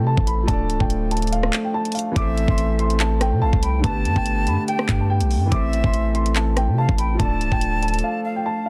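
A deep, sine-toned 808-style bass sits up front in this menacing, ominous drill cut from a longer piece, its long notes striking with a fast attack before decaying beneath a half-time feel at 143 BPM in A minor. From 0.2 s an overdriven electronic drum kit joins it up front, with a knocking kick, bright hi-hats, handclaps and rim clicks. Above them a dark, boxy grand piano carries the melody in its upper register through a digital delay, while a felt-muted upright piano offers soft, intimate accompaniment with audible action noise, and a warm French horn section holds tight, classical-style sustained chords. At 2.2 s an airy metal flute enters with a second line, expressive, with vibrato and a soft attack, also through digital delay, as the harmony moves through Dm, Am and Gadd9. At 8.0 s the bass and drums drop out for a brief break, leaving the pianos, horns and flute in a small room sound under a dense, heavily limited modern master.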